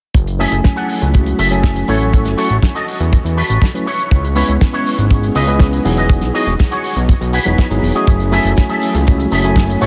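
A fat, detuned sawtooth bass sits up front in this sleek, sensual nu-disco excerpt at 121 BPM, moving through F#m9, A6, C#m7 and Emaj9 over a tight, dry kick and a damped 70s kit of hi-hat, shaker and medium-tuned snare with a rolled-off top. A clean tine electric piano pumps against the sidechain under a diffuse ambient delay, while a twangy, picked electric guitar riff runs through an envelope filter, ensemble chorus and low-pass filter. A very quiet, compressed cabasa slips in at 8.1 seconds, all set in light reverb and small-room ambience.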